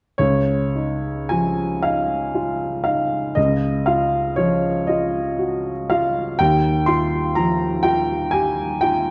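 A clear baby grand piano opens at 0.2 seconds, playing alone in a slow, rubato 6/8 at roughly 35-42 BPM counted in dotted quarters. This short impressionist classical excerpt in Db major, tuned to A4 = 436 Hz, carries a luminous, serene mood. The piano sounds open and up front, ranging from Db2 to C6 as it rests on a Dbadd9 harmony before shifting to Ebadd9 at 6.4 seconds. A wet concert hall reverb with a 2.3-second decay surrounds the instrument, and the overall production leans dark and warm. The passage, cut from a longer piece, ends at 9.1 seconds.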